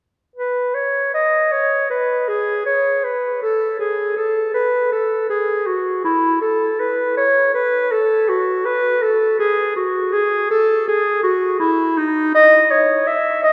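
Dance-like and radiant, this short passage from a longer classical work is a baroque-style fantasia for unaccompanied clarinet, moving at 80 BPM in 4/4 with a free, rubato feel. The clarinet plays alone from 0.4 to 13.5 seconds, ranging from D#4 to E5 with a warm tone and a soft attack that lends its phrases a gentle onset. Though it sits as the clear focus of the recording, the instrument sounds distant and roomy, as if heard from further back in a large space. A wet cathedral reverb with a 4.1-second decay surrounds each note, so the lines hang in the air and blend into the resonance of the hall. The result is a single, continuous section of solo playing rooted in classical style.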